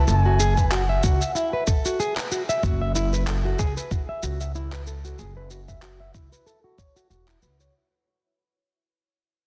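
A swung 16th-note groove at 94 BPM in 4/4 sets an earthy, mystical organic downtempo mood in F# minor. Gritty, sampler-style shaker and handclaps sit in small room ambience, joined at 0.6 s by a thumpy, tape-warm electronic kick that drops out at 6.9 s. Up front, a woody, dark upright bass plays pizzicato with a growly edge from tube saturation and sidechain pumping. The fingerpicked flamenco guitar, also up front, spins arpeggios through a low-pass filter sweep and digital delay. An airy bamboo bansuri, tongued with vibrato, lifted highs and an unsteady tone, sings a brief melody through digital delay that ends at 2.0 s. Light reverb and a dense, heavily limited modern master frame this short cut from a longer piece, which fades out across its length.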